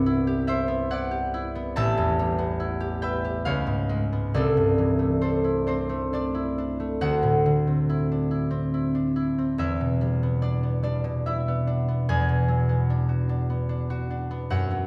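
A fingerpicked concert harp plays alone and up front, its ringing tone spanning A1 to D6 in this serene, dreamy classical solo, which is cut from a longer piece; it moves in a rubato 3/4 at about 66-74 BPM, tuned to A4 = 443 Hz, through lush chords such as Cmaj9, Db7 and E9, while a wet recital-hall reverb places the listener further back in the room.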